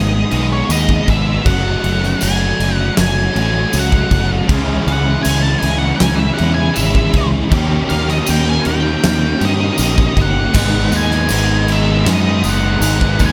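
A straight 4/4 pulse drives this hazy, wistful shoegaze and dream-pop rock passage, carried by a huge arena drum kit with a fat snare and punchy kick that enters at 0.3 seconds, a growling, overdriven fingered bass sitting up front, and a jingly, distant tambourine in the background. A dark octave-fuzz lead guitar with slapback echo sings the melody over riffs from a biting overdriven guitar with ensemble chorus and a hollow-bodied semi-hollow guitar washed in reverse reverb. At 4.5 seconds a crunchy, double-tracked guitar thickens the backdrop, all within a light, small-room reverb.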